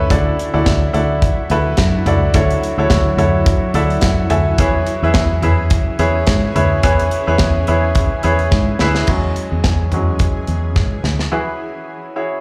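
A bright grand piano with slapback echo opens this uplifting, swung piano-driven pop excerpt alongside a shimmering, detuned pad with chorus in the background and a round, dark fingered electric bass, as a punchy, up-front acoustic drum kit with a rolled-off top joins almost at once, all heard as a live gig through the venue's PA with club reverb, before the brilliant piano takes a solo at 9.1 seconds and carries on alone from 11.3 seconds.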